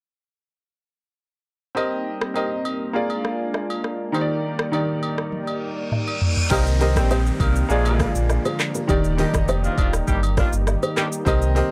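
A straight 4/4 groove at 101 BPM drives this breezy, sunny afrobeats piece in Eb major. Up front, an electronic drum kit with a deep kick, hi-hat, rim click, handclaps, shaker, toms and crash plays alongside close, dry agogo bells and woodblock, while a clear, worn concert grand piano entering at 1.7 seconds and a smooth, detuned analog pad with subtle chorus entering at 1.8 seconds lay down Cm7, Bb7 and Ebmaj7 chords. A drum fill and an electronic reverse cymbal with downlifter lead into a new section at 6.5 seconds, where a full sine sub bass with octave pushes forward, a thumb-plucked nylon-string guitar riff with analog delay sits in the background, and a dark, distant horn section with light vibrato adds a second line, all in a dry, gritty recording with transformer saturation.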